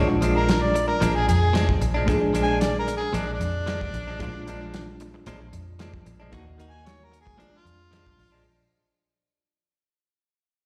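A gritty, reedy electric piano with medium tremolo and slapback echo opens this mournful, brooding soul blues at 113 BPM, joined from the first moment by twangy, bright stabs of clean, directly recorded guitar soaked in spring reverb and a round, punchy, foam-muted bass sitting up front. A dark, smooth soul drum kit with a tight kick and medium-tuned snare enters at 0.2 s, its rolled-off top keeping the straight-eighth 4/4 groove subdued. At 0.4 s a harmonica takes the lead in a jazz-style solo, overdriven and echoed, with light vibrato and scooped notes. The harmony rests on Bb7 before shifting to Ebm at 6.3 s and returning to Bb7. The sound places everything in a live gig heard through a venue's PA with recital-hall reverb, and the whole short excerpt, cut from a longer piece, plays as a fade-out.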